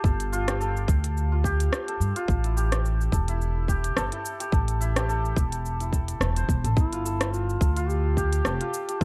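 A shimmering, ringing santur spins delayed arpeggios over woody pizzicato upright bass with tube saturation and sidechain pumping, and a tight, overdriven electronic kick sits up front, joined at 0.1 s by crisp hi-hats, rim clicks and shaker from an overdriven electronic kit. This hypnotic, meditative organic downtempo groove moves at 107 BPM in 4/4 with a light 16th-note swing, circling between Gsus2 and an A7 chord in a dark, small-room production. At 6.8 s a mellow solo duduk enters in folk style, its scooped notes trailed by tape echo.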